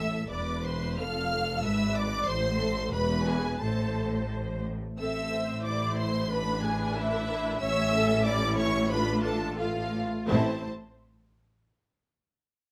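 Expressive bowed cellos stand out in this stormy, dramatic classical-period movement for string orchestra, a rubato passage in 2/4 cut from a longer piece, where smooth, vibrato-laden violins carry the melody and a second line over intense, lush violas and distant, even double basses in light reverb.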